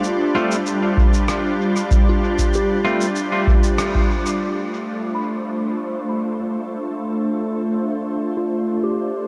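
Ambient dub at 96 BPM in D dorian, meditative and hazy, cut from a longer piece and soaked in a huge dreamy reverb: a pure, detuned organ-like pad with ensemble chorus holds sustained chords up front, while an overdriven, deep analog kick, muffled small-room shaker and rim click with dub echo, and clean, gritty 12-bit hollow-body guitar stabs fill the opening bars before a band accent at 3.8 seconds, after which the pad shifts from G7sus4 to Dm7 under a filter sweep from 4.4 seconds, as a soft, mellow FM bell with chorus, phaser and analog delay, which enters at 2.1 seconds, arpeggiates in the background.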